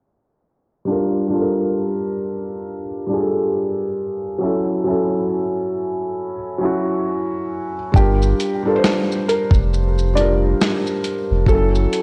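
A soft, felt-muted upright piano opens this hazy, nostalgic lo-fi hip hop excerpt at 0.8 seconds, its intimate accompaniment passing through a cassette-tape haze and a low-pass filter while a filter sweep runs through the opening section. It moves between Gm7 and F#m7 chords, sitting up front in the mix and swung gently on the sixteenths. At 7.9 seconds the second section arrives with a gritty, sampler-style soul drum kit, compressed and re-recorded in a large room, its thumpy kick, medium-tuned snare, hi-hat and shaker placed close and dusty with tape. A deep, round sine sub bass enters at the same moment, sustained and mellow with tube saturation. A woody, slightly detuned upright piano then carries a quiet melody in its upper register, softened by a low-pass filter, cassette tape and tape echo. A lush hall reverb wraps the whole home-cassette sound in a gentle, nostalgic blur.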